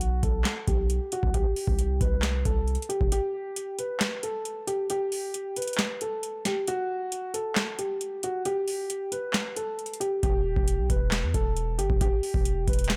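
Melancholic and brooding, this trap hip hop piece rides a half-time feel, cut from a longer track, with a dark, boxy concert grand piano carrying the melody up front through a low-pass filter and tape echo, its tone swept by the filter over the first 3.1 seconds. A booming analog drum machine, overdriven and re-recorded in a small room, drives the full stretch with a deep kick, crisp snare, handclaps and metallic hi-hats. A long, sine-toned 808-style bass decays beneath them, dropping out during the break from 3.1 to 10.2 seconds and returning on an E minor chord, all in a dry, close mix.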